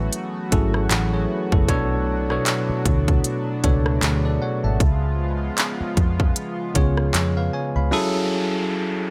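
A short contemporary R&B clip cut from a longer piece, with a longing, late-night mood, set at 77 BPM in 4/4 with a swung sixteenth-note feel. A bell-like tine electric piano sits up front with a clean, direct tone, carrying the chords from the start through to 9.1 seconds. Beneath it, a chorused pulse-width pad holds soft-attack sustained chords with a shimmering, retro sheen, while a vintage muted fingered electric bass adds a dark, round, foam-muted low end. A trap drum kit of handclaps, crisp hi-hats, a hard-clipped kick and rim clicks sits close and tape-warm over the progression from F#m7 through Bm7 to C#7, falling away at 7.4 seconds. At 7.9 seconds the pad and bass drop away and an electronic downlifter sweeps in beneath the lingering electric piano as the harmony returns to F#m7, in a dry, close sound with a faint mains hum.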